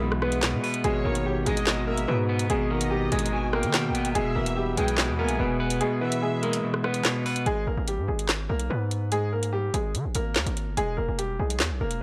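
This dry, gritty cut from a longer drill track has a cassette-tape grain and a digital ambience, setting a menacing, tense mood at 145 BPM in a half-time 4/4 feel in G# harmonic minor. Up front, an electronic drum kit snaps with a woody snare, metallic hi-hats, rim clicks and handclaps, while a distorted 808-style bass hits heavy and saturated with a fast attack and a noisy, aggressive edge. A twangy, fingered electric guitar on the edge of break-up carries the accompaniment, a clear, intimate grand piano with audible action noise plays the melody, and a dark, warbling lo-fi pad hangs in the background with chorus and reverb. A lush, distant violin section with vibrato and portamento adds a second line through an analog delay from 0.8 to 6.6 seconds. The kick briefly drops out before the second section, and around 7.5 seconds the guitar and pad fall away, leaving the drums, bass and piano to push on over the alternating E and G#madd9 chords.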